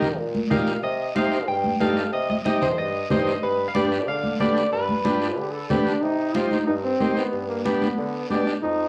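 The twangy electric guitar at the edge of break-up leads this fiery, passionate cumbia excerpt, carrying the melody from 0.5 s to 5.7 s with a bright, picked tone, up front and coated in spring and plate reverb. Underneath, a buzzy vintage combo organ with light vibrato supplies the accompaniment, while a warm bassoon in a classical style holds down the bass line at a brisk 185 BPM in straight 4/4. High-tuned congas struck with hard hands ring out in a small room, joined by a raspy, close guiro set low in the mix. A punchy trombone enters at 5.0 s as a second line and takes a vibrato-laden, pop-style solo from 6.0 s, moving through Cm and G after the earlier Eb, Cm and G7 changes. The excerpt has the character of a home cassette recording, with a wet small-room reverb framing the combo.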